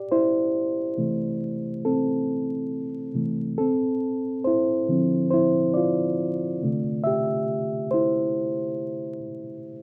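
Through vinyl crackle and the damp glow of a small room, a rough home-demo hip hop fragment sets a mellow, reedy electric piano up front by itself for its 9.8 seconds, its clean tone dulled by cassette tape and a low-pass filter, drifting in a dreamy, swung 4/4 over C6, Dm9 and C69 chords.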